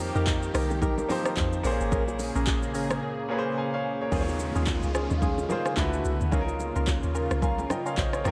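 Swung sixteenths in 4/4 drive this late-night, hypnotic amapiano excerpt, where an up-front deep house kit of deep kick, smooth hi-hat, handclaps, rim click and shaker sits alongside ringing, softly played bongos and congas in the background and a round, dark log drum bass. A brilliant grand piano with audible action noise carries the accompaniment, a thick, detuned unison pad holds sustained chords with chorus, phaser and sidechain pumping, and a hollow, mellow organ stab punctuates with chorus, phaser and digital delay, all in light reverb. The opening drop breaks into a silent gap from 3.0 to 4.1 seconds, after which a background downlifter enters as the chords move on.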